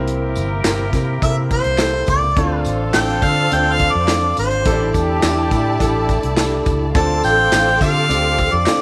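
A punchy harmonica leads this passionate, urgent 1960s-style soul excerpt, entering at 1.2 s and sitting up front with light vibrato and a distant, roomy quality. Underneath, a dark, round, foam-muted electric bass and an acoustic drum kit with a punchy kick and medium-tuned snare drive a straight 4/4 feel, while tambourine and group handclaps add a vintage, band-limited sparkle in the background. A grand piano plays intimate accompaniment, its action noise audible, and a fat, lightly overdriven tonewheel organ holds very quiet sustained chords with key click and fast rotary speaker. A tight horn section with a vintage tone supplies a second line from the start, joined at 2.4 s by a lush, bowed symphonic string section in the background. The harmony moves from C7 to Dm7 and A7sus4 before returning to Dm7, all within a small room with light reverb.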